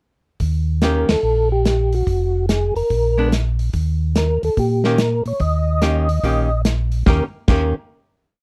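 A dry, closely miked soul jazz organ trio swings soulfully at 144 BPM in Eb mixolydian, with a mellow, round tonewheel organ playing a two-feel bass line through a slow rotary speaker, a dark, smooth acoustic drum kit keeping time on the hi-hat with a sticks backbeat, a flute-like percussive organ stating a motif-based melody with chorus vibrato, and a hollow-body archtop guitar comping in syncopated three- and four-note chord shapes, all arriving within the first second before a band accent at 1.0 seconds and a final chord from 7.1 seconds.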